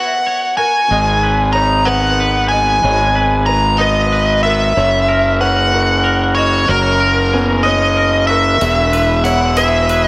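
A nasal lead guitar with a parked wah carries the melody of this post-rock passage in 6/8, sitting up front with overdrive and digital delay, while a felt-muted upright piano and a twangy electric guitar play arpeggios behind it. The piano is soft and intimate, its thin felt and short sustain letting the action noise come through, with slapback echo and digital delay. The electric guitar is bright, clean and compressed, dressed in lush chorus, slapback echo and digital delay. At 0.9 seconds a fuzz fingered electric bass arrives, dark, round and overdriven, sitting up front beneath chords that move from G#m to F# and then E. An acoustic hi-hat enters in the background at 8.6 seconds, and a moderate hall reverb gives the soaring, cinematic passage, cut from a longer piece, a big arena sound.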